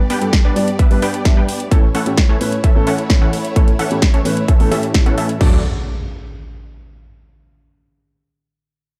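A bright, punchy supersaw stab drives this short festival progressive house cut, its detuned sawtooth riff filtered and echoed by digital delay while a filter sweep runs across it from the opening until 5.4 seconds. Set at 130 BPM in D major with a straight 4/4 feel, the mood is anthemic and triumphant, moving over G and A chords before landing on D. A dark, mellow concert grand piano carries the accompaniment with audible action noise and deep bass, pumping with the sidechain alongside the supersaw and a background string section whose bowed, vibrato-tinged sustained chords add a smooth top. A layered big-room kit opens the drums with a punchy snare, metallic hats and crash cymbal, soon joined by an up-front, punchy electronic kick, both set in studio reverb. At 5.4 seconds a thick, menacing detuned saw bass sounds very quietly on D as an electronic impact hits up front, ringing on to 7.3 seconds. 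The production is dark and warm with light reverb, and the passage is cut from a longer piece.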